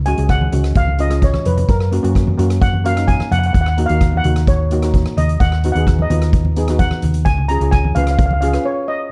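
A shimmering steel pan carries the melody from 0.1 s, played with soft rubber sticks for a mellow tone, while a second steel pan strikes with medium rubber sticks in accompaniment over a round, punchy hollow-body electric bass and a boomy-kicked street-band drum kit with hi-hat and rim click, a drum fill landing at 1.2 s. This festive, bouncy calypso cut from a longer piece moves at 129 BPM in a straight 4/4, with low-tuned, very quiet congas ringing in the background and chords moving from C#sus4 through F#, D#m and B/D# back to C#. The production is dark and warm in a small, boxy room, and a brief break arrives at 8.7 s.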